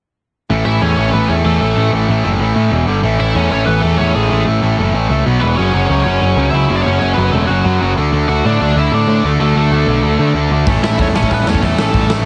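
A distorted electric guitar riff and a growling, overdriven picked bass open this rebellious, upbeat punk rock excerpt in A major at 189 BPM, joined at 0.7 s by a biting lead guitar melody over chords shifting from A through E5, G5, B5, F#5 and D5, before a raw garage drum kit with a punchy kick and gritty, rolled-off top and a hollow-body semi-hollow guitar riff tucked in the background come in at 10.7 s, all in a dry, heavily compressed radio sound.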